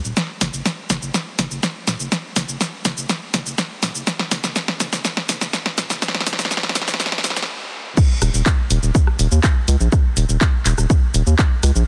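A round, deep analog bass with sidechain pumping and a dry, punchy analog drum machine of handclaps, hi-hat, rim click, shaker, snare and crash open this dark, driving melodic techno excerpt at 123 BPM in Eb minor, building through a drum fill to a stop at 7.5 seconds before the drop at 8.0 seconds brings in a layered, overdriven electronic kick up front, all within a dense, heavily limited modern master with light reverb.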